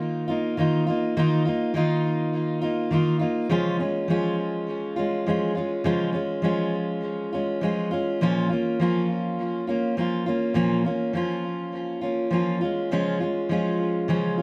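A straight 4/4 pulse carries this carefree, heartfelt pop excerpt, where a lone fingerpicked steel-string jumbo acoustic guitar, full-bodied with fresh-string sparkle and sitting up front, moves from Ebsus2 through Db and Bbm under a touch of digital delay and moderate studio reverb.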